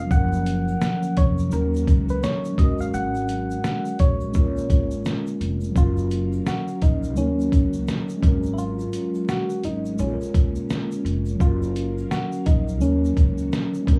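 A gritty, compressed sampler-style drum kit sits up front in this nostalgic, cosy lo-fi hip hop excerpt, its pitched-down sound carrying a thumpy kick and swung feel, while a woody pizzicato upright bass holds the low end. A mellow tine electric piano provides accompaniment through its built-in speakers and a round, gentle FM synth lead with chorus and vibrato carries the melody, both softened by a low-pass filter, as a very quiet string machine with cellos sustains full-bodied chords and a faint egg shaker adds grainy texture. Vinyl crackle and small room ambience with light reverb frame the mix.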